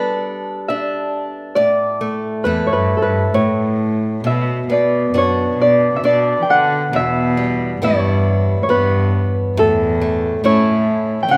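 A bright, ringing Celtic harp carries the melody from the start over a picked, boxy old ladder-braced acoustic guitar with audible finger squeak, setting a pastoral, wistful Celtic slow air in 3/4 at a rubato 68 BPM, tuned to A4 = 438 Hz. At 2.4 seconds a single bowed cello joins with a reedy, gut-string period tone, adding a low second line close and up front. The parts sit in a moderate concert hall reverb as the chords move from Gadd9 through Bm and Em to A in this brief passage cut from a longer piece.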